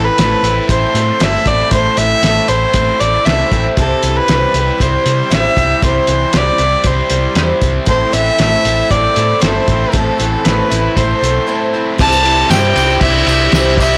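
An up-front, dark bowed violin carries the melody with light vibrato and an earthy, smooth top in this hopeful, open-road excerpt of folk rock and heartland rock at 117 BPM in C major, moving from C to Am at 7.9 seconds. Beneath it sit a woody, shimmering, octave-doubled twelve-string acoustic guitar, a reedy accordion holding slow-beating chords in the background, a double-tracked overdriven electric guitar riff, a round, punchy hollow-body bass, and a muffled, cloth-damped drum kit with a fat snare and a tight, softly clipped kick. After a short break, a very quiet, gritty reed electric piano with tremolo and a jingly tambourine enter at 12.0 seconds, all within a small, lightly reverberant room and a blown-out, overdriven recording.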